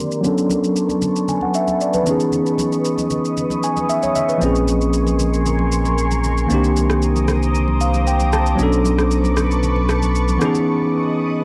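A bell-like tine electric piano carries the accompaniment in this soulful, deep amapiano excerpt at 115 BPM, its bright, clean tone sitting up front through a low-pass filter and cassette tape, with short fills around 3.4 and 7.5 seconds over minor-ninth chords such as Bm9, Dbm9 and Cm9. Beneath it a cloudy, evolving granular pad hangs in its own reverb, while an electronic shaker and rim click keep a straight 4/4 and thick-skinned congas sit dry in the background. A round, dark analog bass joins up front at 4.4 seconds, and a filter sweep runs across the whole light-reverb home cassette recording.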